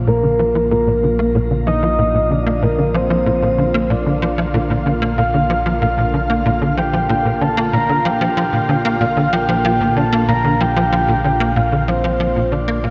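Ambient, sequencer-driven space music in Bb major at 94 BPM, expansive and cosmic, with a tight, punchy sequencer bass riff up front driving beneath a lush, thick, warbling unison pad of sustained chords and a low analog drone on Bb1 that evolves with pulse-width modulation. A soft octave-layered synth lead enters at 0.1 s, full and round with vibrato and tape echo, while a very quiet, breathy, wind-like tuned noise texture hangs on F5. Everything sits in a wet hall reverb, and the excerpt fades out from 11.1 s to 12.9 s.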